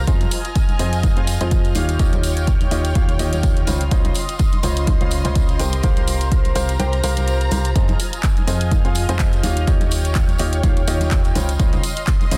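A swung groove from a punchy, up-front electronic kick and a layered garage kit of handclaps and hi-hat, both in studio reverb, with ringing tambourine and congas in the background, drives this bittersweet, energetic piano house excerpt, where a clear concert grand piano riff with delay, a round FM bass, a silky, bright string pad with ensemble chorus and dark, woody bowed strings all pump with the sidechain over a looping minor progression, and the kick drops out between 6.8 and 7.8 seconds before returning.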